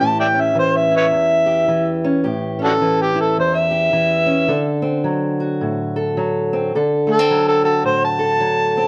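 A loosely swung 4/4 at 107 BPM carries this soulful, gritty acoustic country blues excerpt, where an overdriven, amplified harmonica takes a jazz-style solo with light vibrato, scooped notes and tongue slaps over a boxy, woody fingerpicked parlour guitar on old strings, both up front in a dark production with plate reverb as the chords move from A7 to D7 at 4.5 seconds.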